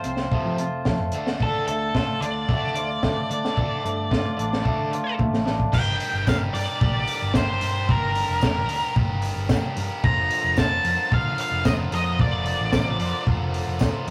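Cool and bittersweet, this indie rock excerpt in G minor moves at 111 BPM in a straight 4/4, with a compact cocktail drum kit sitting up front, dark and punchy with a high-tuned snare, beneath an amped, picked electric bass, a bright overdriven guitar riff in spring reverb, and a clean, twangy, fingered guitar riff that stops at 5.7 seconds. An octave-fuzz lead guitar carries the melody from 1.4 seconds, prominent and distorted with tape echo, while a drum fill leads into the second section, where the chords shift from Gm to Bb/F and a jingly tambourine enters in the background at 6.3 seconds. The rough rehearsal-room recording has a tube-saturated grain and a moderate booth ambience.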